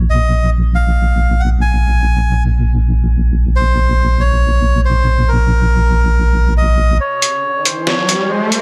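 Deep dubstep in Bb minor at 139 BPM with a swung, half-time feel, this brooding, cavernous excerpt sets a deep, dark sawtooth-and-sine wobble bass, thickened by chorus and tube saturation, beneath a reedy, breathy melodica softened by a low-pass filter and dub echo, until a build-up at 7.0 s brings a filter sweep on the melodica, a gritty, pitched-down sampler-style trip hop kit of overdriven hi-hat and snare from 7.2 s, and an electronic riser from 7.4 s, all set close and dry.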